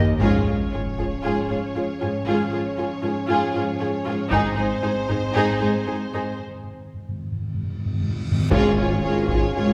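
Epic orchestral film-score music at 116 BPM, heroic and triumphant, cut from a longer piece: bowed violin sections carry a smooth melody and a lush second line over vibrato-rich violas, a rich cello section and clear, very quiet double basses, while a mellow French horn section holds sustained chords and close, dry taiko drums pound beneath. A huge, bright sub drop and impact open the passage in the background, and the taiko and double basses drop away as calf-headed timpani take a fill over a break from 6.4 to 8.5 seconds. A reverse cymbal then leads into a fresh accent at 8.5 seconds where the taiko, double basses and a distant, roomy tuba return, all set in a wet scoring-stage reverb heard from further back in the hall.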